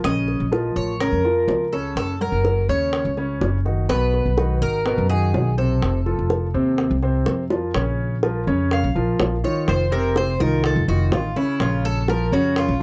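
Latin Cuban son and guajira at 124 BPM, sultry and nostalgic, cut from a longer piece with a dry, close 1970s-style studio sound and light reverb. Woody, thumpy pizzicato upright bass and intimate grand piano arpeggios with audible action noise and long sustain sit up front beside tight, high-tuned bongos played with soft hands, and after a brief fill at 7.3 seconds the metallic, double-strung Cuban tres takes a picked solo in Bb minor from 7.7 seconds.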